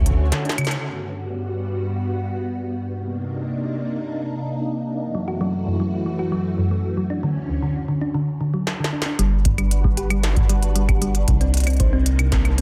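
Intricate and glitchy, this IDM fragment cut from a longer piece floats on a silky, vintage string machine holding dark sustained chords through phaser and ensemble chorus, moving from Dmaj7 through Gmaj7, Cm9 and F#m7, while a round, tine-like thumb-piano synth pluck spins gentle arpeggios with chorus and dub echo, returning at 5.1 seconds after a brief opening flicker. An industrial drum kit with a clanging snare, smooth low-passed hats and claves, tape-warm and re-recorded in a large room, comes in with a fill at 8.7 seconds. At 9.2 seconds a rubbery, nasal square bass arrives, and a dry, deep analog kick joins it at 9.5 seconds to drive the closing section. The dense, heavily limited master carries light reverb.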